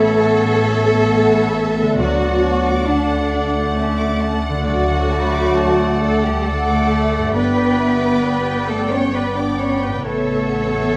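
Hopeful and tender, this short cinematic excerpt in 3/4 with a rubato feel sets a smooth violin section melody in the background over second lines from a clear solo oboe, an airy flute section, a lush, distant second violin section and a very quiet clarinet, while an expressive viola section with portamento, dark, roomy French horns holding chords, ringing harp arpeggios, woody cellos and a focused double bass fill out the texture, with soft-mallet timpani adding a round touch from 2.0 to 3.3 seconds inside a moderate scoring-stage reverb.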